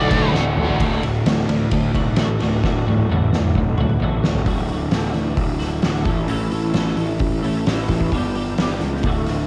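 Quiet-loud alternative rock with a restless, cathartic mood, this home cassette recording opens on a riff from a biting overdriven guitar with spring reverb, briefly joined by an overdriven semi-hollow guitar in the background and a very quiet, double-tracked sludgy distorted guitar that drops out at 0.8 seconds, when a bright, compressed twelve-string electric guitar enters with chorused arpeggios over a growly fuzz bass and an oversized, low-tuned drum kit with a fat snare, punchy kick and dark cymbals sitting up front, the biting guitar falling away at 4.5 seconds.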